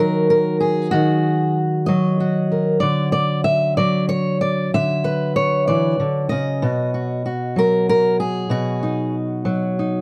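A dark, warm production with light reverb frames this short excerpt of wistful, intimate solo folk, played at 63 BPM in a straight 6/8. A fingerpicked steel-string acoustic guitar carries everything from 0.0 to 10.0 seconds, sitting up front with an auditorium-sized body and audible finger squeak as it ranges from B2 to E5. The harmony moves from D#m to Dadd9 at 2.8 seconds and settles on B at 6.6 seconds.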